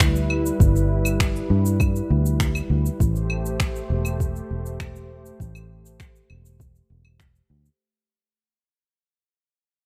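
Set in a light reverb and fading out across its 7.8 seconds, this delicate, autumnal folktronica fragment moves at 100 BPM in 4/4 with a straight feel, in A minor, shifting from G6 to Am7 at 3.0 seconds. A smooth, warbling vintage analog pad with a slow attack and subtle chorus holds sustained chords, while a dark, round fingered electric bass sits up front with a foam-muted tone. Tape-tinged electronic finger snaps, shaker and claves with a small-room character pair with a soft, overdriven electronic kick drum to carry the rhythm.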